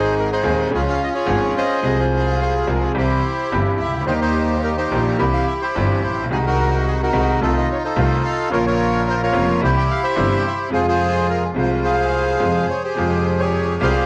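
A reedy, up-front bandoneon carries the melody in this dramatic, sultry tango fragment in F minor, played with a rubato feel around 108 BPM and bathed in plate reverb. A brilliant concert grand piano with deep bass supplies the accompaniment, while a single bowed double bass, focused and smooth-topped with vibrato and a touch of tube saturation, holds the low end through a harmonic path that settles on an Fmadd9 as a new section begins at 13.0 seconds. The whole piece sits in a moderate studio room and carries the worn, warbling pitch drift of old cassette tape.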